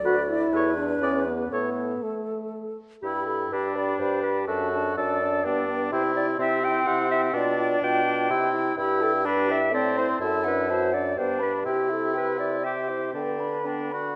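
Bathed in the wet reverb of a scoring stage, this spirited excerpt from a quick classical-period movement for wind quintet in 3/4 moves with a lively rubato, as an airy, hollow, close-miked flute with vibrato carries the melody over a softly attacked oboe second line, smooth-topped mellow clarinet and distant, roomy French horn accompaniment, and an up-front bassoon bass.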